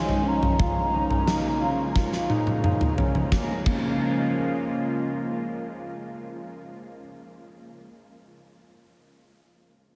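A hollow, woody clarinet-like synth lead, a swirling phased analog pad and a dark, clean fingered electric guitar with lush chorus open this melancholic, ethereal dream pop excerpt at 88 BPM in Bb minor, moving from Fm7 to Bbm7, as a huge arena drum kit with a fat snare, punchy kick and bright cymbals enters at 0.1 seconds and plays a fill from 2.0 seconds, while the guitar's arpeggios carry on to 7.6 seconds and the whole mix is soaked in a vast, dreamy reverb.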